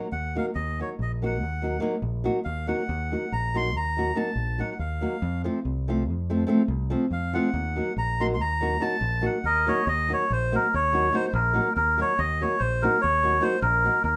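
Balkan wedding-band folk, fiery and virtuosic, races at 284 BPM in 11/8 in E-flat Dorian with a raised fourth, as a reedy, nasal melodica carries an up-front solo through the first 9.9 seconds over dark, fingerpicked nylon-string guitar and a punchy, overdriven fingered electric bass, while the chords move from Ebm to F and back to Ebm in a moderate studio reverb.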